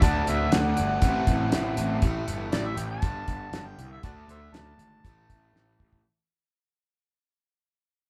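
A straight 4/4 classic rock groove swaggers and drives as a dry 70s drum kit with a fat snare and tight kick sits up front beside a growly, fuzzed picked bass, while a crunchy guitar riff hangs in the background and a second overdriven guitar riff drops out at 2.0 s, beneath a gritty, amplified harmonica solo full of punchy tongue slaps, the band playing live in one room with wet reverb as the passage fades out throughout and ends on a drum fill at 5.5 s.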